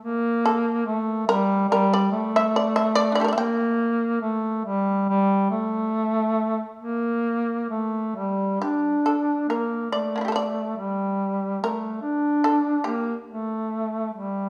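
This is a short passage of Japanese traditional chamber music, cut from a longer piece, with an austere, solitary mood and a free, rubato feel in four. A clear duduk opens the recording at 0.0 seconds, carrying a low second line with vibrato and scooped notes in a folk style. The shamisen joins at 0.5 seconds and takes the melody, its bright, buzzing, percussive plucked tone ranging much higher above the duduk. Both instruments sit up front, and the passage moves from its opening section into a second one at 8.6 seconds before it stops at 14.5 seconds. A recital-hall reverb surrounds the pair with the resonant ambience of a church or concert hall, lending the sparse duet a spacious quality.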